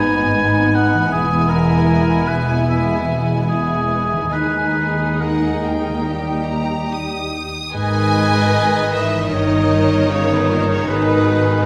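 A lush violin section carries a yearning, elegiac melody with smooth vibrato from the first moment of this slow, rubato orchestral movement, over second violins, violas, and distant, roomy French horns holding sustained chords. A solo oboe, a mellow, vintage-toned clarinet and a pure silver flute weave second lines, while a very soft harp rings out thumb-plucked arpeggios and dark cellos with expressive portamento join woody double basses on the bass. The ensemble shifts into a new section at 7.7 seconds, all set in a reverberant recital hall that gives the romantic sound a soft, spacious glow.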